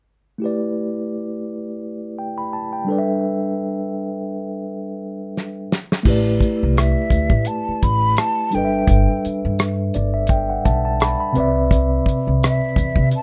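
A mellow tine electric piano opens this soulful, sensual neo-soul R&B excerpt at 85 BPM with a lightly swung sixteenth feel, moving through A9sus4 and G69 chords before a damped 70s drum kit with dark cymbals and a tight kick enters on a fill at 5.4 seconds, soon joined by woody pizzicato upright bass and a breathy, hollow jazz flute with vibrato, while the electric piano adds its own fill in a dry, rough home-demo sound.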